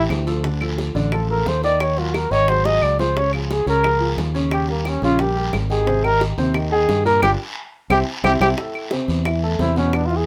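Lively and danceable, this Afro-Cuban jazz excerpt puts a dark, breathy trumpet solo up front, with vibrato and scooped notes. Beneath it sit a warm grand piano, a punchy fingered electric bass, round low-tuned bongos played with hard hands, woody claves in the background and a raspy guiro, with a drum fill at 2.6 seconds and a band accent from 7.2 seconds, all set in light reverb.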